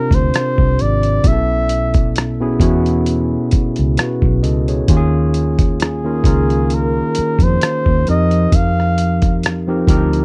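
A warm flugelhorn with light vibrato and scooped notes sings a jazz-style melody through tape echo in this sultry, soulful neo-soul R&B piece at 66 BPM with a lightly swung 16th feel, floating over barky, overdriven tine electric piano chords moving through C9sus4, B9sus4, Eb9sus4 and F9sus4, a dark, round, foam-muted fingered bass, and an up-front, gritty, compressed sampler-style drum kit of thumpy kick, hi-hat and rim click, in a dry, close 1970s-style studio sound.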